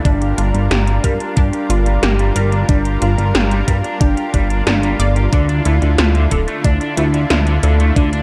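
An overdriven, thumpy electronic kick sits up front in this nostalgic, nocturnal synthwave excerpt, moving at 91 BPM in a straight 4/4 and carrying studio reverb. Beside it, a glossy, mellow synth bass built from pulse and sawtooth tones with ring modulation and a plucky filter sits equally forward, its sustained notes pumping under sidechain compression. The 80s-style drum kit adds a gated snare and metallic hats with a tape-aged character, while a thick, airy unison pad of detuned sawtooth and square waves with a noise layer holds soft-attack chords, bathed in chorus and sidechain pumping. A round, detuned analog pluck plays bright arpeggios through chorus and tape echo. Lower in the mix, a picked, overdriven electric guitar plays a riff through subtle chorus, tape echo and a low-pass filter that sweeps for the whole passage. The harmony moves from Gm7 to Dmadd9 at 5.3 seconds, all set in a dark production with light reverb and digital ambience.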